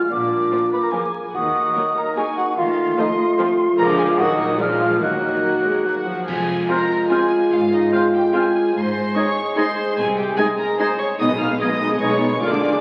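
In a straight three-four lilt, this playful, mischievous film cue opens with a woody, dry xylophone played with soft rubber mallets, carrying the tune alongside a sul tasto violin section. A silver concert flute, a very quiet clarinet and a second violin section add their own lines as violas fill in, a tight, up-front French horn section holds sustained chords, and cello and double bass sections sit in the background. The xylophone drops out at 6.0 s. At 6.3 s a band accent marks a new section, with bright clash cymbals and concert bass drum striking briefly, and a distant, roomy oboe joins with another line at 6.7 s, all heard through a wet recital hall reverb and the crackle of a very old 78 rpm record in this cut from a longer piece.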